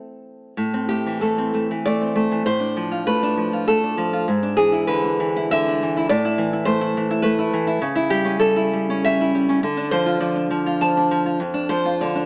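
Passionate and wistful, this romantic piece for solo classical guitar moves in a flexible, rubato three-four lilt. The fingerpicked nylon-string guitar sits up front with a warm, acoustic tone, ranging from low F2 up to A5 across the short excerpt cut from a longer work. The harmony travels from A minor through Dm/A and E7/G# back home, then turns toward D minor at 7.8 s by way of an A7/C# chord, settling on Dm/F near the close at 11.4 s. A moderate scoring-stage reverb lends a sense of space, while the overall sound has a small-speaker character that narrows its body.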